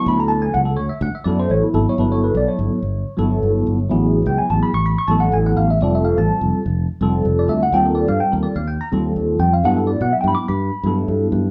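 A tine electric piano provides the accompaniment in this short stretch of electric jazz fusion, its clean tone sounding through built-in speakers and colored by a phaser as it spreads chords from F#3 up to D6. Beneath it, a fingered electric bass, bright, direct and amped, joins at 0.1 seconds and holds the low end between F1 and B2. Both parts sit up front, with the band playing live together in one room and a moderate large-studio reverb giving the sound some air. At 125 BPM in a straight 4/4, the mood is soaring yet funky, and the tuning rests at A4 = 436 Hz. The harmony drifts through rich colors, from Dmaj9 to Gmaj9 at 2.0 seconds, then Amaj9, Fadd9 and Ebadd9 before returning to Gmaj9, as the passage runs to 11.5 seconds, cut from a longer piece.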